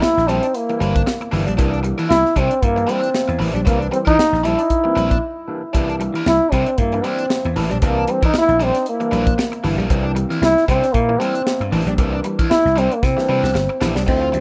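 A lightly swung sixteenth-note groove at 116 BPM in 4/4 drives this gritty, playful funk cut, with a crisp fusion kit (high-tuned snare, tight kick) and a growly, punchy slap bass holding down a C9 vamp in C mixolydian, pausing for a brief break at 5.2 seconds and closing on a drum fill from 13.0 seconds. Up front, a warm, roomy trombone carries the jazz-style solo melody with vibrato and an analog delay. Beneath it, a biting overdriven guitar through wah, a stringy overdriven clav with phaser stabs, and a clean hollow-body electric guitar riffing quietly in the background from 0.3 seconds fill out the small-room ambience of a rough home demo.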